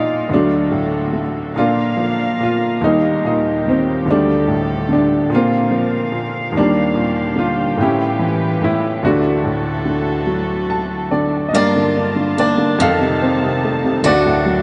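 Acoustic folk-pop ballad in a slow, straight 6/8 at 48 BPM, reflective and intimate, set in a vast, echoing space with a huge ambient reverb. An up-front, woody upright piano carries the melody over sustained chords from a reedy, gut-toned string section with light vibrato, adding a fill at 10.3 seconds. At 11.5 seconds a bright picked acoustic guitar with swing and audible finger squeak joins in arpeggios as the harmony turns through Gm7 and F7 back to D, and the excerpt is cut from a longer piece.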